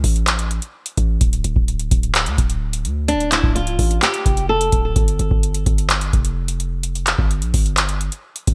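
The recording has a bright, 1980s-style digital sheen with a light reverb, cut from a longer piece. It is a brooding, melancholic hip hop and trap track in a half-time feel. A booming analog drum machine sits up front throughout, its deep kick, metallic hi-hats and handclaps carrying a tape-tinged character and a gated reverb. Alongside it, also up front, a hard-hitting 808-style bass delivers punchy, heavy sine tones with a noise layer, a fast attack and a decaying tail. After an opening break of drums and bass, a fingerpicked flamenco guitar enters at 3.1 seconds with an acoustic, warm tone, softened by a low-pass filter and trailed by delay, before dropping away at 4.9 seconds.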